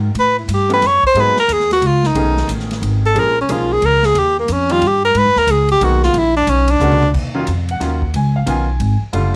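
Late-night and moody, this short cut from a longer small-group swing and bop piece in Eb minor moves in a brisk 3/4 at 180 BPM, with an up-front, woody pizzicato upright bass and a clear, short-sustain baby grand piano comping under a close-miked tenor saxophone that solos with soft-attack vibrato until 7.1 seconds, while a quiet, airy big-band drum kit with dark cymbals and a punchy kick adds a fill just before the sax drops out, all carrying the gentle character of a home cassette recording with light reverb.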